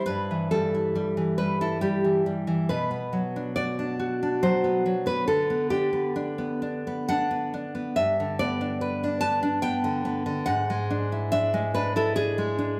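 Set in a slow, rubato 3/4 at around 60-75 BPM, this tender romantic excerpt for solo classical guitar unfolds over 12.8 seconds. The nylon-string guitar sits up front with a full-bodied, deep tone, fingerpicked from G2 up to A5, with audible finger squeak as it moves through Em/G, Bm, Bm/D and G before reaching E7/G# at 10.4 seconds. A wet recital-hall reverb of 1.6 seconds surrounds the instrument, lending the sound of a church or concert hall.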